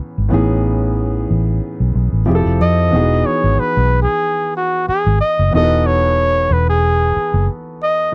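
Soulful and smooth, this short neo-soul R&B fragment in E major sways at 92 BPM with a light 16th-note swing, as an intimate concert grand piano with audible action noise and deep bass moves from Amaj9#11 through Fmaj7 to Emaj7, a dark, round, foam-muted electric bass sits up front from 0.2 seconds, and a warm jazz-style flugelhorn with vibrato, soft attack and scooped notes carries the solo melody from 2.6 seconds, all captured in a dry, close 1970s-style studio sound.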